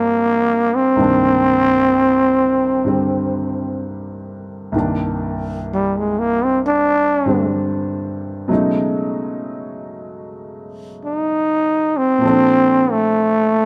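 A slow swing at 64 BPM in 4/4, with eighth notes swung at 69%, sets a wistful, smoky jazz mood in C minor, tuned to A4 = 441 Hz. A raspy, growling trombone carries the melody up front with vibrato and scooped notes, moving into its solo at 4.7 seconds, while an intimate, clear grand piano accompanies with its action noise audible. Light reverb surrounds this short cut from a longer piece as the harmony moves from Cm9 to B13 at 8.5 seconds and to Bbmaj9 at 12.2 seconds.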